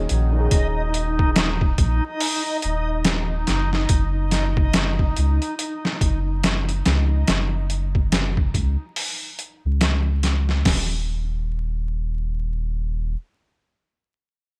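A gritty, crackling haze hangs over this dark, hypnotic trip hop fragment at 71 BPM, its swung sixteenths carried by a compressed, pitched-down sampler kit with a thumpy kick and medium-tuned snare set up front in a small room. A round, deep dub sub bass anchors the Ebm7 to Gb5 harmony until 13.2 seconds. A muted felt piano adds only a brief tremolo-and-tape-echo touch with audible action noise, while a reversed, granular swell hovers on Eb4 in dreamy reverb until 7.3 seconds.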